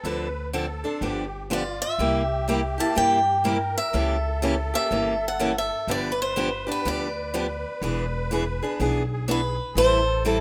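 Acoustic string swing in the jazz manouche style, playful and lively, with a boxy, bright picked lead guitar carrying the melody up front while a shimmering, reedy musette accordion adds a quieter second line. A second picked steel-string guitar with fresh strings and audible finger squeak supplies the accompaniment, and a woody pizzicato upright bass anchors the bottom through changes from Dm7 and G7 to a C#dim7 and on to E7 and Am7. The rough home demo mix sits in a small room with light reverb, and the clip is cut from a longer piece, running about 10.4 seconds.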